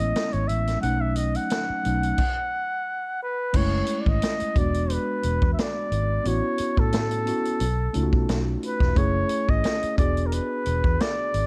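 Lush 1970s-style soul at 88 BPM in 4/4, with a gentle swing on the sixteenths and a bittersweet, silky mood, this brief passage is cut from a longer piece. A breathy flugelhorn carries the melody up front, its whispered, intimate tone softened by light vibrato and a smooth top. A mellow tine electric piano supplies clean, direct accompaniment, while a foam-muted fingered electric bass sits round and punchy underneath. A vintage drum kit enters at 0.2 seconds with a punchy kick, a medium-tuned snare, hi-hat and dark crash cymbal, its rolled-off top captured naturally in a studio room. The band drops into a stop from 2.2 to 3.5 seconds before moving into a new section where the harmony turns from Amaj7 and B7 toward F#m9, E9 and A69, all within a dark, warm production.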